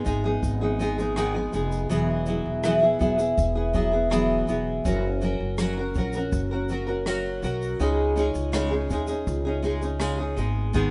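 A straight 4/4 at 81 BPM carries this easy-going, carefree acoustic pop passage in F# major, cut from a longer piece and moving through G#m, Eadd9, F# and C#sus2. Up front, a bright, double-tracked nylon-string guitar is fingerpicked with fresh strings and audible finger squeak, over a woody pizzicato upright bass and a jazz brush drum kit with a boomy kick, rim click and shaker. A jingly, close and dry tambourine sits in the background from 5.6 s, and the rough home demo mix has light reverb, small room ambience and a muted top end.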